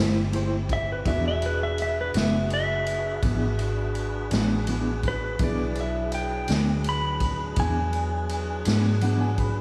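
A clean, compressed lap steel guitar carries the melody in this swaggering, rollicking slow blues, its slide and volume swells soaked in slapback echo and analog delay as it solos until 9.0 seconds. The tempo sits at 55 BPM in a straight 12/8 feel in E mixolydian, moving from Am7 to E7. A dark, round, foam-muted electric bass sits up front, while a swinging big-band drum kit enters at 0.3 seconds with a boomy kick, medium-tuned snare and dusky ride cymbal in a roomy studio space. A fat tonewheel organ holds sustained chords through a slow rotary speaker, and a mellow, fingered electric guitar with tremolo and slapback echo accompanies quietly in the background. A boxy concert grand piano with deep bass and long sustain also stays in the background before adding a fill at 8.7 seconds. A lush hall reverb gives this cut from a longer piece a big arena sound.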